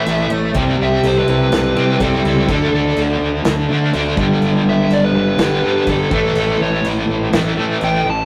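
This bittersweet, restless stretch of quiet-loud alternative rock, cut from a longer piece in a straight 4/4, opens with three guitars at once. Up front, a cranked, double-tracked stack guitar plays a picked, overdriven riff with harmonic tremolo. A dark, compressed fuzz lead guitar takes the melody as a solo, while a boxy, fresh-stringed acoustic guitar picks swing-style arpeggios in the background until 2.5 seconds. A growly fingered electric bass with fuzz and overdrive, sounding direct and amped, joins at 0.1 seconds alongside a loose indie drum kit, whose medium-tuned snare, tight kick and crash cymbal sit back in a small, pumping room. The harmony moves through A, C6, D5, G and A5. It all rings in a moderate stone-room reverb with the rough, saturated character of a rehearsal-room take.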